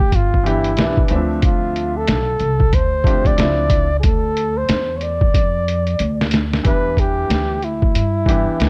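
A swung 92 BPM 4/4 groove from a gritty, pitched-down, tape-toned lo-fi sampler drum kit with a thumpy kick and fat snare carries this mellow, cool jazz-hop excerpt in D dorian, as woody pizzicato upright bass and a natural-sounding upright piano (entering at 0.4 s) support an up-front, breathy, whispered flugelhorn melody with vibrato in studio reverb, before a drum fill at 5.3 s leads into a flugelhorn solo from 6.6 s.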